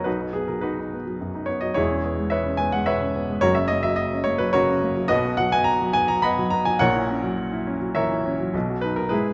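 Set in a moderate recital-hall reverb, this brief excerpt of a hopeful romantic character piece for solo piano places a warm, natural baby grand up front, its short-sustained tones ranging from E1 to B5 as it moves in a rubato triple metre through B, C#m7/E, F#, B and F#7/A# before returning to B at 8.5 seconds.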